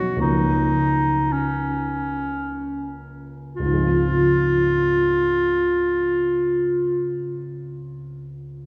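Dreamy and pastoral, this fragment of a classical impressionist duo sets a bright, up-front solo clarinet melody over a dark, mellow grand piano accompaniment with deep bass and short sustain, the clarinet ending at 7.1 seconds while the piano carries on to 8.7 seconds, all of it bathed in the wet reverb of a church.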